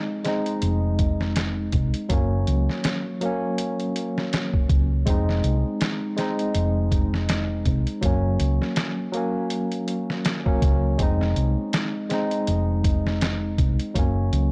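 A swung 16th-note groove in 4/4 drives this hypnotic, smoky trip hop excerpt cut from a longer piece, with a muffled, pitched-down sampler-style drum kit carrying 12-bit grit, a thumpy kick and a medium-tuned snare entering at 0.2 seconds. A tine electric piano opens at 0.0 seconds, clean and up front with harmonic tremolo and tape echo, alternating between Fm7 and Gb. A round, amped hollow-body fingered bass joins at 0.6 seconds, sitting forward in a dark production wrapped in digital ambience.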